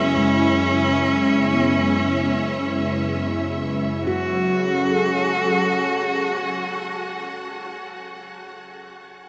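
Drenched in a long shimmering reverb, this spacious, melancholic ambient fragment in F# minor drifts in free time, where a focused, bowed solo cello with vibrato sings an up-front melody through tape echo over a mellow, detuned sawtooth pad with chorus and a soft attack, while a smooth studio violin section holds a high E5 in the background until 4.1 s and a very quiet, ringing stainless-steel handpan traces meditative arpeggios in a boxy small room, the harmony settling from C#m7/F# to F#m at 4.1 s.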